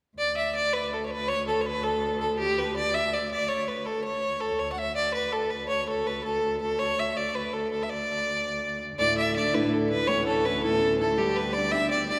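A steady 6/8 pulse carries this lively, bright Celtic folk excerpt from a longer piece. A single bowed fiddle takes the melody up front from the start, its tone rich, smooth and even, with a light vibrato and a smooth top. Beneath it, one bowed cello holds a low drone on D2, focused and gently vibrating, sitting well back in the balance. At 9.0 seconds a picked steel-string acoustic guitar enters with a dark accompaniment, moving through Dsus2, Aadd9 and G. The whole performance sits in a church or concert hall, where a long, wet reverb lets each note hang in the air.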